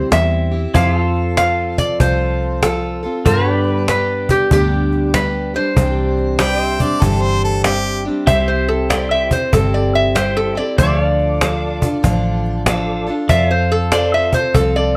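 A lap resonator guitar carries the melody from the first moment, its nasal, metallic slide tone sitting up front over a picked steel-string acoustic guitar with fresh, bright strings, a round, foam-muted electric bass and a woody cajon played with soft hands. This is an easygoing, nostalgic stretch of honky-tonk and classic country in C major at 96 BPM, with a swung 4/4 feel, taken from a longer piece. A twangy, clean pedal steel guitar holds sustained chords in the background with volume swells, while a punchy harmonica with vibrato steps forward for a short second line at 6.4 seconds. From 8.3 seconds the resonator guitar takes a solo with a steel bar, and at 8.9 seconds a percussive tonewheel organ slips in behind it, lightly overdriven and dark, turning through a fast rotary speaker with chorus vibrato. The band sits in a moderate studio reverb.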